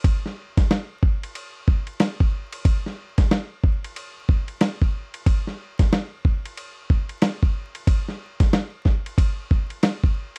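A dry, close 1970s-style studio sound with vinyl crackle and light reverb frames this cool, smoky hip hop cut from a longer piece, where a gritty, compressed, sampler-style soul drum kit sits up front for the full 10.4 seconds at 92 BPM in 4/4 with a 62% swing on the 16ths, its thumpy kick and medium-tuned snare joined by hi-hat and ride cymbal.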